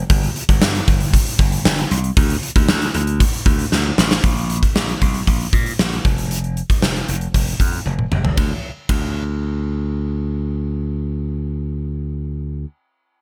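1980s-style pop in a dramatic, moody vein, this short excerpt pairs an up-front slap bass, bright and punchy with a direct, amped edge, against a gated 80s drum kit of kick, snare, hi-hat, ride, toms and tambourine set in an airy stone room with polished, bright cymbals. Drum fills mark the turns at 3.7 and 7.9 seconds, and after the kit stops at 9.0 seconds the bass carries on alone to 12.6 seconds under a light reverb.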